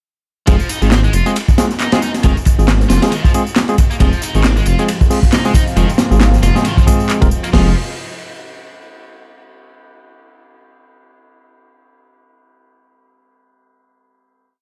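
Gritty and energetic, this short breakbeat piece in F minor runs at 136 BPM with a swung 16th feel, built on an up-front, saturated acoustic break of punchy kick, medium-tuned snare, hi-hat and dark ride, a dim overdriven layer of electronic tambourine and handclaps, and a deep, rumbling detuned saw bass playing a skipping syncopated line, while a double-tracked distorted guitar repeats a 32-step riff through dub echo, a bell-like tine electric piano adds dotted-rhythm stabs of one chord shape moved in parallel, and from 4.6 s a swirling, warbling analog pad with phaser, chorus and sidechain pumping sits in the background before a final chord at 7.5 s, all in a dry mix.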